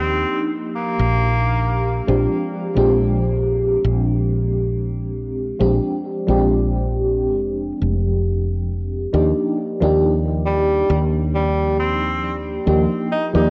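Vaporwave in Eb major at 68 BPM with a lightly swung sixteenth feel, faded and woozy: a mellow FM electric piano, soft and round with tremolo, phaser, lush chorus and analog delay, carries the Ebmaj9 to Bb13 changes over a woody, punchy fretless electric bass, while a bright, forceful tenor saxophone with vibrato and tape echo sounds from 0.0 to 2.0 seconds and returns at 10.5 seconds, the recording steeped in worn, warbling cassette pitch drift and a small, lightly reverberant room.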